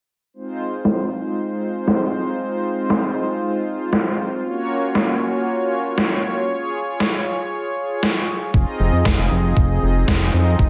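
Synthwave at 117 BPM in F phrygian, nocturnal and nostalgic, this excerpt opens on a bold, brassy analog pad with chorus, tremolo, sampler grit and sidechain pumping, sustaining chords from Fm7 through Gbmaj7 and Db/F, while an overdriven, sampler-style electronic snare with gated reverb and a filter sweep sits up front in a lush hall until a fat, detuned, saturated sawtooth bass and a thumpy overdriven kick arrive together at 8.5 seconds.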